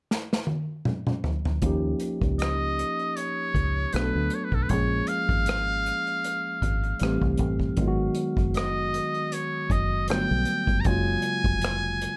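A dry, close recording opens with an acoustic drum kit played with bundle sticks, its punchy kick and medium-tuned snare running through a fill before a worn, slightly out-of-tune tine electric piano, lightly overdriven through a combo amp, enters at 1.6 seconds alongside a dark, round, foam-muted fingered electric bass. At 2.4 seconds a buzzy, thin trumpet with a metal mute takes the solo in a jazz style, with light vibrato and a soft attack over a smooth, soulful chord sequence that begins on D#9 and moves through minor sevenths to Gmaj9 and F#maj9. This slow R&B and neo-soul groove sits at 78 BPM in 4/4 with a gentle swing on the 16ths, and the excerpt is cut from a longer piece.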